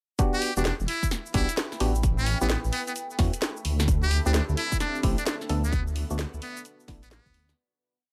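Late-night and moody, this short two-step UK garage piece moves at 130 BPM in E minor, with a swung sixteenth-note feel and a chord cycle of Em9, A9, D7sus4 and Bm7/D. A punchy, up-front electronic kick sets a two-step pattern, while a house kit adds a cracking snare, shaker and skipping swung hats and rims. Underneath, a rumbling, detuned saw bass with tube saturation plays a syncopated line, and hollow organ stabs with chorus and a tape tint punctuate the chords in rootless voicings. Over this a close-miked trumpet with a metal mute, buzzy and brilliant, plays short jazz-style phrases with vibrato, scooped notes and delay. A deep, evolving ambient pad with sidechain pumping sits in the background from 1.2 seconds, and a very quiet, breathy pad with phaser joins at 4.2 seconds before the piece fades out from 5.1 seconds.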